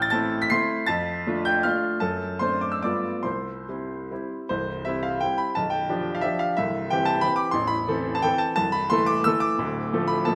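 Classical romantic music, this short portion of a longer piece is a triple-time dance in 3/4 for solo grand piano, capricious and wistful in mood. The tempo moves between 131 and 190 BPM with a free rubato feel, and dotted rhythms give the dance its lilt. The piano sounds clear and open, with long sustain, and sits up front, ranging from A0 to C7 in a moderate recital hall reverb. The harmony is in C major but begins on A minor, passing through D minor and D7 toward a G9 that resolves to C. A second section arrives at 4.5 s, moving from G7 back to C, then settling into A minor before it ends on D minor at 9.6 s.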